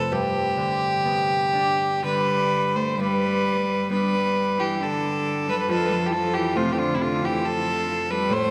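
Bathed in a wet cathedral reverb, this nostalgic, tender Celtic slow air unfolds in a free, rubato three-time, cut from a longer piece. An up-front solo fiddle, warm and nasal with a smooth top, carries the melody over the mellow, ringing fingerpicked chords of a Celtic harp, moving from G to F at 5.7 seconds. At 2.0 seconds a single bowed cello enters with a clear, earthy second line touched by light vibrato.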